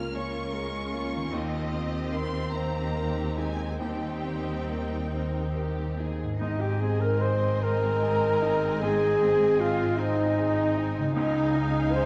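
A mellow French horn section stands out in this cinematic, emotional film score excerpt, holding sustained chords with light vibrato and a smooth top. The passage is uplifting and hopeful, in Ab major, moving in a rubato 6/8 at about 46-52 BPM counted in dotted quarters. Above the horns, a dark, distant violin section carries the bowed melody with expressive vibrato, while a second violin section adds a rich, even second line and a viola section fills in lush accompaniment in the background. Underneath, a woody cello section with a soft attack and a close, chamber-sized double bass section hold the bass, a clear, open baby grand piano plays accompaniment in the background, and a very quiet concert harp rings out fingerpicked arpeggios. At 6.4 s a hollow, airy concert flute and a solo oboe in classical style join with second lines of their own, as the harmony moves from Bbm/Db to Ab and settles on Dbadd9. 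The sound sits in a wet scoring-stage reverb, with a warm production and tape saturation.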